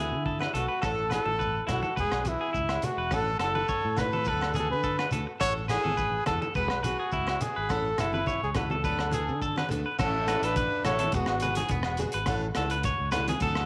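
A close-miked trumpet leads this sunny, carefree highlife guitar band excerpt, playing a jazz-style melody with vibrato and scooped notes until about 11.7 seconds. Beside it, a brilliant, twangy clean electric guitar picks arpeggios through a slapback echo. In the background, a steel-string acoustic guitar with fresh strings and audible finger squeak plays accompaniment, while a fingered electric bass, direct and amped, holds the low end. From 0.3 seconds a saturated, gritty breakbeat kit with dark cymbals and a tight kick sets a lightly swung groove of kick, hi-hat, rim click and crash, and in the background it is joined by ringing agogo bells, low-tuned vintage congas played with hard hands, and a grainy shekere. At 10.0 seconds a breathy, whispered alto saxophone adds a soft, intimate second line in subtone, and light reverb with small room ambience frames the band.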